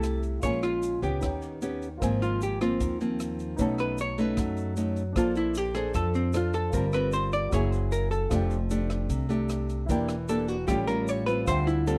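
Bossa nova in a breezy, relaxed mood, this short cut from a longer piece has a dry, close studio sound with a 1970s flavour. A dark, clean archtop guitar, miked and amplified, carries the melody up front, and from 2.0 seconds it moves into a hollow-body jazz solo over colourful extended chords. Beside it, a small, fingerpicked nylon-string guitar and a woody, growly upright bass, played pizzicato on steel strings, are also close and present. A warm baby grand piano with short sustain and audible action noise adds intimate accompaniment in the background. A swinging big-band drum kit, airy and polished with a punchy kick, keeps time on hi-hat, kick drum and rim click, while a grainy, bright tube shaker, compressed and saturated, sits far back in the mix.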